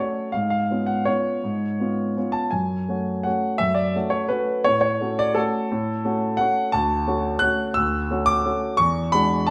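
Classical piano waltz in F# minor, elegant and graceful, moving in 3/4 with a rubato feel at roughly 161-185 BPM and tuned to A4 = 442 Hz. A solo grand piano, warm and up front with long sustain, spans D2 to F#6 across this 9.5-second excerpt, passing through C#7/G#, F#m, F#m/A and Dmaj7 before reaching E13 at 8.8 seconds. Moderate recital hall reverb of 1.4 seconds surrounds the present, close piano tone.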